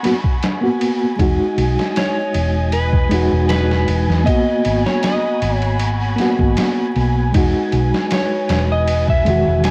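A home cassette recording with vinyl crackle and a light reverb gives this short trip hop fragment a hypnotic, dark haze at 78 BPM in a straight 4/4. A reedy electric piano sits up front with a clean tone, its fast tremolo and harmonic tremolo sounding through its built-in speakers and trailed by tape echo, while a distant, muted violin section holds veiled, bowed chords with vibrato above it. The sampler-style drum kit is compressed, pitched down and gritty, with a thumpy kick, a medium-tuned snare and ride cymbal that sound re-recorded in a small room. A round, punchy hollow-body bass, fingered and amped, joins at 1.2 seconds and sits up front in the low register. At 2.0 seconds a slightly broken-up slide guitar takes the melody, roughened by 12-bit sampler grit and spun out with dub echo. The harmony moves slowly between G#m7 and Emaj7 throughout.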